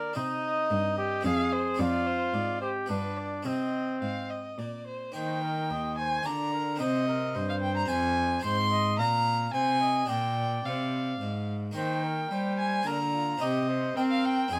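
A focused violin with vibrato sits up front on the second line, above a distant, roomy solo trumpet that carries the melody in this dance-like, radiant baroque-style sonata movement in 3/4, cut from a longer piece. A close, rich bowed cello holds the bass while a brilliant, plucked harpsichord with octave strings supplies the continuo accompaniment, and all four parts play throughout the 14.6 seconds under a light reverb. The harmony opens in a minor key and turns to a major key at 5.1 seconds.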